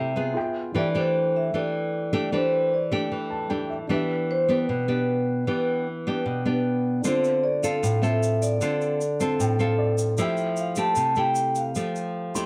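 Relaxed and sophisticated, this bossa nova excerpt moves with a straight, easy feel under a light reverb and a dark, warm production. A metallic, ringing vibraphone played with medium mallets and the motor off carries the melody, its tone a little boxy as if heard in a small room. Up front, a fingerpicked nylon-string guitar supplies warm, classical accompaniment, while a dark, intimate baby grand piano sits in the background with short sustain and audible action noise, adding brief fills such as one at 3.1 seconds. The harmony drifts through lush jazz chords, from G7b9 through Em7 and Dm7 to a closing Fmaj9. At 7.0 seconds a grainy, bright egg shaker joins quietly, lending a touch of acoustic texture as the passage carries on toward its cut-off.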